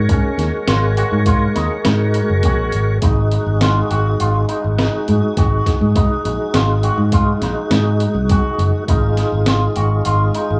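Driving and intricate, this short progressive instrumental cut from a longer piece moves at 102 BPM in 5/4 over Ab9sus4 and Ebm/Ab chords, with a gritty, pitched-down sampler-style drum kit with thumpy kick and up-front fingered electric bass anchoring a full, lightly overdriven tonewheel organ turning through a slow rotary speaker with chorus vibrato, while a clean, twangy, scooped envelope-filtered electric guitar picks arpeggios through spring reverb and digital delay, all in a dry small room colored by worn, warbling cassette tape drift.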